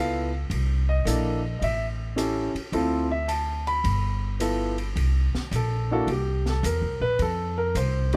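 Piano and upright bass open together on a rootless G13 chord, and the drums join at 0.5 seconds, setting up a playful, relaxed jazz piano trio swing at 108 BPM in C mixolydian. The concert grand carries the melody with an intimate, vintage character, smooth tone and deep low end, its action noise audible close up and a plate reverb around it. The pizzicato upright bass sits up front with a woody, steel-strung sound, while the small-room drum kit stays further back, mixing dark cymbals on the ride and hi-hat with a high-tuned snare and a boomy kick. The harmony moves through C13, A7, Dm7 and G13 before turning to C7(no3) at 5.0 seconds, where the piano takes a solo over bass and drums, landing on F at 7.2 seconds. Light room reverb and close, detailed miking keep the sound present in this short cut from a longer piece.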